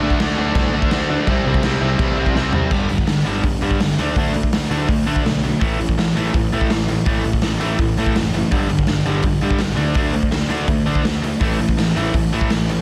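Punk rock with an urgent, raw edge, this fragment of a longer piece opens with a biting, double-tracked overdriven guitar riffing over D and C alongside a distorted electric guitar and a hollow-body semi-hollow guitar, while a growly fuzz bass sits in the background. A raw garage drum kit, up front with a punchy kick and a stone-room ambience, comes in at 0.1 s and plays a fill from 2.4 s. At 2.7 s the biting guitar stops and the remaining guitars drive through G5, D5 and A5 power chords under light reverb and a dense, heavily limited master.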